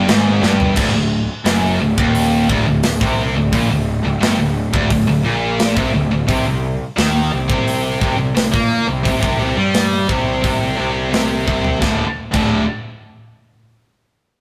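Heavy and relentless, this heavy metal excerpt moves at a steady, straight 4/4 pace with a darkly exotic harmonic colour, cut from a longer piece. Two bright, high-gain electric guitars carry the distorted, picked riff together, one of them sitting up front in the mix. Beneath them, a fuzz-laden picked electric bass adds a growly, overdriven low end. A tight metal drum kit, acoustic and polished with bright cymbals, a medium-tuned snare and a tight kick, sits up front and opens with a short fill at 0.4 seconds, returning with another just before the shift at 11.8 seconds. The harmony moves from G5 through D and C5 before landing on D5, all within a rough rehearsal-room recording with moderate stone-room reverb and warm saturation.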